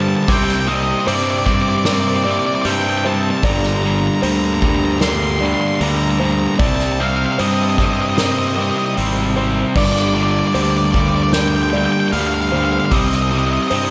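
Post-rock with a cinematic, brooding mood, built on a bright, crunchy overdriven guitar riff up front, a dark octave-fuzz lead guitar melody, a growly fuzz bass, muted felt piano arpeggios in the background, very quiet lush bowed strings holding chords, and a distant soft-mallet drum kit entering at 0.3 seconds, all set in a big hall reverb that gives an arena-sized sound as the harmony moves between Cmadd9 and Gm.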